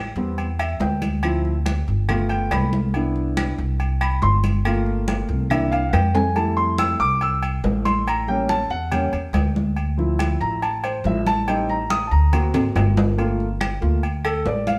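Sophisticated and sunny, this Afro-Cuban jazz excerpt moves at 141 BPM in a straight 4/4, shifting from C major to F major at 6.4 s over rich jazz harmony. A warm concert grand piano with deep bass solos up front throughout, beside a dark, woody pizzicato upright bass, while thick-skinned vintage congas, ringing metal-shelled agogo bells and timbales, and saturated claves in the background drive the groove. The claves drop out at 6.1 s as a drum fill hits and return at 13.6 s, and the whole band plays live in a moderate stone room.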